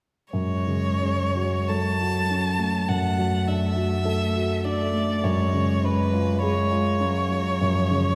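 A rubato pulse at 51 BPM in 4/4 carries this slow, melancholic and solemn romantic movement for piano trio in F# minor, cut from a longer piece, with all three players sounding together from 0.3 to 8.2 s. A clear, focused violin sings the melody with vibrato, close and up front, while a single cello plays sul tasto beneath it as a second line, intimate, with light vibrato, a soft attack and an airy bow, and a warm grand piano, also up front, supplies the accompaniment over F#m, D/F# and C#/F# harmonies. A wet church reverb lasting 3.7 s gives the trio the spacious resonance of a church or concert hall.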